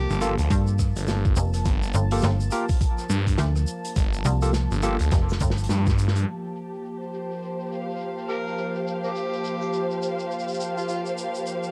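A gritty, funky glitch hop fragment opens on a warbling, nostalgic pad, a brief blip of overdriven harmonica and a snappy, metallic FM slap bass, soon joined by a swirling, detuned phased saw bass, a loose small-room indie kit under cassette haze, barky tine electric piano stabs and a knocking electronic kick, until a drum fill from 5.1 s gives way at 6.3 s to a filter-swept kit, lush, woody bowed strings, and the harmonica's amplified jazz-style solo with tape echo from 8.3 s.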